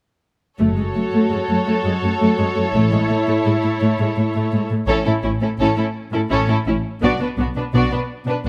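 Dramatic and relentless, this cinematic string passage, cut from a longer piece, moves at a slow 56 BPM in a straight 6/8, counted in dotted quarters. Violins, violas, cellos and double basses all enter together at 0.6 s and sustain through to 8.5 s. The viola section carries the accompaniment with a rich, smooth-topped vibrato sound placed up front, while the violins add a lush, even second line above it. Underneath, the cellos give a close, expressive bass with a soft attack, joined by the distant double basses, whose bowing brings touches of portamento. The harmony moves from F# minor to A and then to B minor at 7.0 s, as a build-up gathers across the second section from 4.9 s. Light reverb and close, detailed microphones keep the ensemble clear and intimate.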